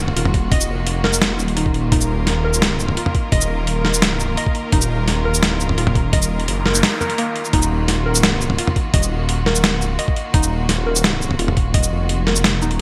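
Half-time drum and bass at 171 BPM in Eb minor, dark and spacious, this excerpt sets a deep, rumbling detuned saw bass and a thumpy, gritty electronic kick under a pitched-down boom bap sampler kit with a medium-tuned snare in gated reverb, while a bright, biting symphonic string section holds sustained Ebmadd9 chords with 12-bit grit and sidechain pumping, a warbling lo-fi pluck spins chorused, delayed arpeggios, and a background noise sweep passes briefly at 6.4 seconds, all within a bright 1980s-style digital production.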